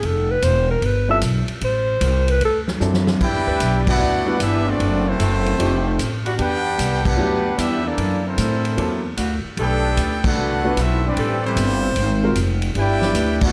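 Swinging and energetic, this excerpt of big band jazz in G major at 151 BPM opens with a breathy, mellow alto saxophone solo over woody, growly upright bass and a punchy swinging drum kit, soon joined by an intimate upright piano with audible action noise, until a drum fill hands off at 3.2 seconds to a clear trumpet section carrying the melody, a trombone section on a second line and a bright saxophone section holding background chords, with band accents punctuating the light reverb.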